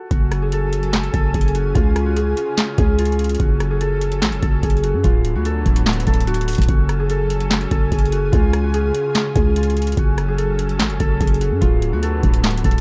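A booming analog drum machine with a deep kick, crisp snare, metallic hats, handclaps and rim clicks drives this eerie, menacing half-time trap excerpt alongside a growling, buzzy 808-style bass, a ringing fingerpicked concert harp melody and veiled con sordino strings holding sustained chords in a dark, small-room production.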